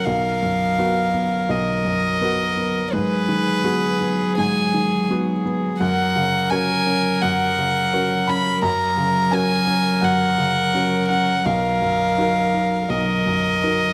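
Close, detailed microphones sit inside a moderate recital hall reverb, giving this hopeful, intimate neoclassical piece for piano and strings a clear sense of space around its players. It moves at 84 BPM in 4/4 with a rubato feel, in F# major, and this cut from a longer piece runs just under 14 seconds. A single violin carries the melody up front, its sul tasto tone warm and airy with a soft attack that seems to float between B4 and B5. Beneath it, a close solo cello holds a second line on F#3 with a nasal purity, while a solo viola adds a clear, floating accompaniment between G#4 and A#4. A felt-muted upright piano, also up front, spans B1 to B5 with a mellow, short-sustained sound and audible action noise. The harmony settles from Bmaj7 through G#m7 to F#, arriving back on Bmaj7 at 11.5 seconds.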